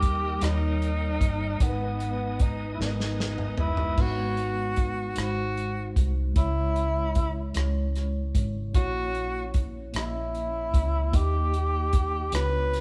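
Captured live in a moderately reverberant stone room, this fervent, solemn slow gospel excerpt in 6/8 at 50 BPM in G# minor sets a breathy, intimate tenor saxophone melody with scooped notes and vibrato over mellow tine electric piano, a round, punchy hollow-body bass, and an up-front soul drum kit with dark cymbals that plays a fill from 2.8 to 4.0 seconds, while a bright, reedy tonewheel organ with key click and fast rotary speaker sustains chords only until 4.0 seconds.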